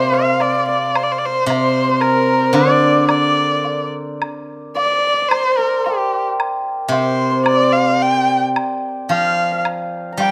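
A dark, woody erhu leads this wistful, graceful excerpt of Chinese traditional chamber music, its single bowed voice sitting up front with soft attacks, vibrato and portamento over a rubato 2/4 pulse around 110 BPM in D jue mode. A bright, shimmering hammered dulcimer carries a ringing second line, while a silvery fingerpicked steel-string zither adds up-front accompaniment in its low register, dropping out at 4.2 seconds and returning at 6.9 seconds. A dry woodblock enters at 0.4 seconds, and the whole piece is captured with close, detailed microphones and light reverb.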